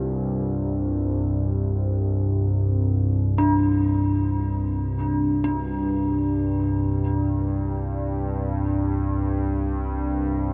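A chorused analog drone dominates this dark, desolate ambient passage, sitting up front and holding low between C2 and G2 with a slowly evolving, wave-folded body of detuned sawtooth, pulse and sine tones that swell in gently and sustain on a Csus24 sonority. Alongside it, a bronze singing bowl rings very quietly on F4 from the start, its mellow, metallic tone carrying a slow beating that lends a meditative undertow. At 3.4 seconds an eerie synth bell enters around D4, playing arpeggios with an inharmonic, warbling FM character and a vintage tint, treated with chorus, phaser and a diffuse ambient delay. The music floats in free time, steeped in a huge, wet reverb with an 8.2-second decay that smears every note into a cavernous haze. This 10.5-second fragment, cut from a longer piece, stays within a single section, sustaining its bleak, suspended stillness throughout.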